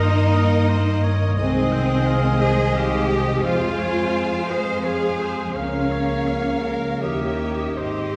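Heard from further back in a scoring stage, this short orchestral passage sits in a wet reverb that lingers for about 1.5 seconds. It is a serene classical fragment in three, played with rubato and cut from a longer piece, moving from Eb/G through Ab/C, Fm and Db6 to a closing Eb7b9. A lush, focused violin section carries the melody with vibrato. A second, smoother violin section, a clear oboe and an airy flute trace second lines in the background, joined by a distant, very quiet mellow clarinet. A viola section supplies even accompaniment, French horns and trombones hold sustained chords, and a soft-attack trumpet section adds gentle stabs. Underneath, the cello section sounds close and the bowed double basses sit up front, giving the bass a full, rich weight.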